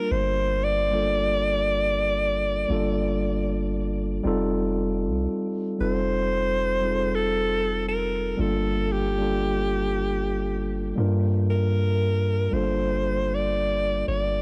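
Contemporary R&B at a slow 58 BPM in G minor, with a late-night, longing mood and a gentle 16th-note swing. A clear alto saxophone carries the melody with jazz-style vibrato and tape echo, over a clean, mellow tine electric piano moving through Gm7, F7 and Gm9, while a deep, sine-toned 808-style bass with a fast attack and long decay enters at 0.1 s. The parts sit up front in a small, dry room with a gritty hardware character, and a brief new section arrives at 12.5 s before this cut from a longer piece ends at 14.4 s.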